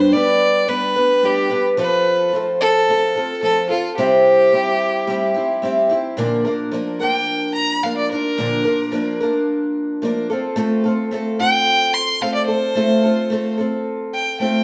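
A straight, steady 4/4 pulse drives this short, jangly rock piece cut from a longer performance. A picked twelve-string acoustic guitar carries the accompaniment with a shimmering, octave-doubled ring, its old strings giving a woody, boxy character up front in the mix. Above it, a single bowed fiddle sings the melody with a focused tone, light vibrato and a smooth top, sitting just as close to the listener. At 6.2 seconds the music moves into a new section where the fiddle takes a solo through to the end at 14.6 seconds. The chords travel from G through F and C, then settle on Bb before turning to F/A. The band plays live in one room, bathed in a generous, wet large-studio reverb that lends the whole a warm glow.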